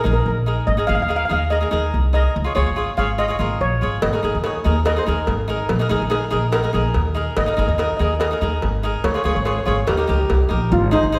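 A shimmering steel pan carries the melody in this sunny, festive calypso excerpt, played over crisp, up-front picked cavaquinho and a thumpy, woody pizzicato upright bass on gut strings, with a compressed, saturated cowbell joining at 4.0 s, and the ensemble sits in a moderate concert-hall reverb.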